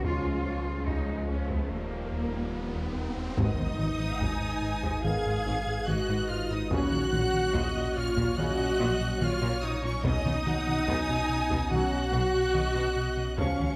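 Set in a moderate scoring-stage reverb, this tense, relentless excerpt of a hybrid orchestral and electronic film score moves at a straight 72 BPM in G# dorian, with a lush violin section carrying the vibrato-rich melody over a second, softly attacked violin line and focused, clear violas. Mellow French horns and vintage-toned trombones hold sustained chords in the background beside a warbling, lo-fi tape-like pad with chorus, while rich cellos, a very quiet and distant double bass section, a deep sine sub bass and a dark, wave-folded analog bass riff fill out the low end. Compressed, saturated taiko drums struck with hard sticks drive underneath, and an electronic riser from 0.3 seconds gives way to an impact at 3.4 seconds as the chords shift through C#, D#add9, G#m, F#/A# and Badd9.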